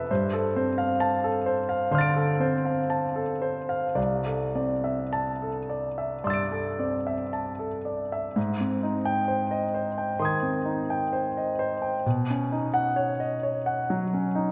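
A clear, intimate grand piano, up front with audible action noise and spanning C2 to D7, drifts through a dreamy, luminous impressionist passage cut from a longer classical piece, moving in rubato 4/4 at 51-69 BPM from C major into A♭ major at 8.4 seconds over chords such as G9sus4, C69, Abmaj7 and Badd9, all bathed in a wet concert hall reverb with a 1.9-second decay.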